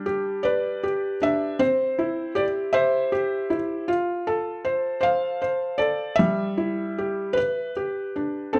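A felt-muted upright piano plays alone in this short lullaby excerpt cut from a longer piece, its soft, mellow tone sitting up front with audible action noise and a short sustain. The mood is tender and innocent, moving at a slow 52 BPM in 6/8 with a rubato feel that lets the time breathe. The piano ranges from G3 to F5, passing through G, C, F and Em/G before settling back on G at 7.4 seconds. The thin felt gives the sound an intimate, natural quality, as if the listener were sitting beside the instrument. Close, detailed microphones and a light reverb keep the recording clear and gentle across its roughly 8.6 seconds.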